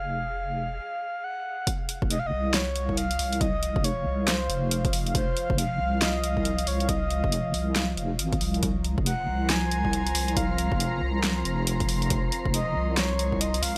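A half-time deep dubstep groove at 138 BPM in 4/4, with a 61% swing on the sixteenths, drives this cavernous, meditative passage in F phrygian, cut from a longer piece. A breathy, flute-like synth lead carries the melody from the start, soft and vibrato-laden, with chorus and dub echo, while a deep, softly wobbling bass with a square-and-sine body sits up front under it. A wind-like tuned noise texture breathes in the background at the opening, stops at 0.8 seconds for a short break, and returns later through its own reverb. The drop lands at 1.7 seconds, when a punchy electronic kick and a deep house kit with handclaps, hi-hat and a fat, up-front snare come in with studio reverb. A dark analog pad, detuned and evolving with a slow attack and sub-octave weight, joins with sustained chords at 3.2 seconds, adding moody, full-bodied depth to the mix.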